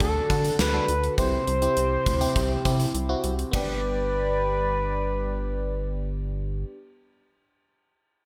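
A bright, polished 1980s-style digital production with plate reverb frames this upbeat synth-pop excerpt at 102 BPM in G major, where a smooth sawtooth lead glides with portamento and vibrato over glassy, bell-like FM electric piano, a shimmering chorused pulse-width pad, and a rubbery, nasal square bass, while an up-front gated drum kit with tight kick and bright cymbals drives the groove until 3.7 seconds as the chords move from D to C and settle on G.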